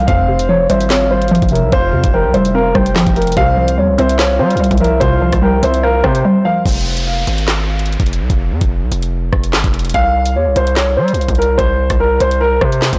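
A half-time drill groove drives this ominous, dark hip hop cut, with a produced, up-front drum kit of knocking kick, woody snare, metallic hi-hats, handclaps and rim clicks under a heavy, distorted 808-style bass that hits hard and decays. A dark, mellow upright piano carries the melody with long sustain and tape echo, over a hollow, bouncy, detuned square pluck with chorus, while a soft, round octave-layered synth lead adds a full-bodied second line with vibrato, phaser and echo. The lead fades and the drums drop out briefly at 6.2 seconds. At 6.7 seconds the piano and pluck fall away, and an electronic downlifter sweeps through a break until the piano returns at 9.9 seconds, all within a blown-out, overdriven mix with light digital ambience and dull highs.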